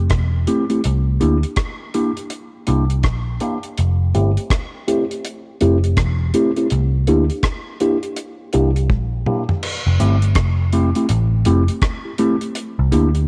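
Lovers rock reggae at a relaxed 82 BPM in F major, with a swung sixteenth-note feel and a romantic, sweet mood, cut from a longer piece. A vintage muted picked electric bass opens at 0.0 seconds, sitting up front with a dark, round, foam-muted and amped tone low in its register. A deep reggae drum kit joins almost immediately, dry and smooth with a tight kick, rim clicks, hi-hat, toms and crash cymbal, and a drum fill at 8.9 seconds leads into a new section at 9.6 seconds. A mellow tine electric piano enters at 0.5 seconds, clean and gently colored by a phaser, heard as if through its built-in speakers. The harmony moves between Fmaj7, voiced rootless at the start, and C7. Light reverb and a studio ambience frame the mix.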